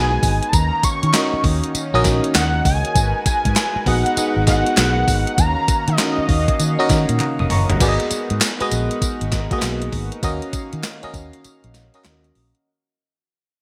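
Bouncy and punchy, this new jack swing R&B excerpt rides a swung groove from a gated 1980s drum machine with a thumpy kick and an overdriven, gated-reverb snare, backed by a dark, round, foam-muted fingered bass and very quiet crisp group handclaps. A glassy, bell-like FM electric piano sits up front over a shimmering chorused pulse-width pad in the background, while a thick, nasal unison synth lead with vibrato carries the melody until 7.1 seconds. After a drum fill, the music fades out from 7.8 seconds, ending in a break, all with a bright 1980s-style digital sheen.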